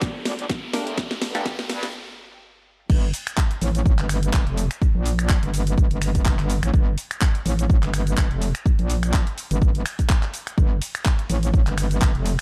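A dark, dry bass house production with little reverb and a tape-warm, punchy low end opens this aggressive, swaggering cut from a longer piece, set in G minor at 125 BPM with a 16th-note swing of 55%. A band-passed, nasal chord stab built from detuned sawtooth and wave-folded tones sits bright in the background through a phaser and tape echo, sounding only until 1.4 s as a filter sweep runs across the build-up alongside a drum fill and an electronic riser that lasts to 1.9 s. After a short break, the drop lands at 2.9 s and the harmony moves from Gmadd9 to Gsus2. Up front, a metallic FM wobble bass, saturated through tube drive, compressed, chorused and pumping against the sidechain, growls between F1 and G2 for the whole passage. A punchy, layered electronic kick re-recorded in a large room drives the groove, while a house kit with a cracking snare, handclaps, finger snaps, hi-hat, shaker, ride and crash fills in the top.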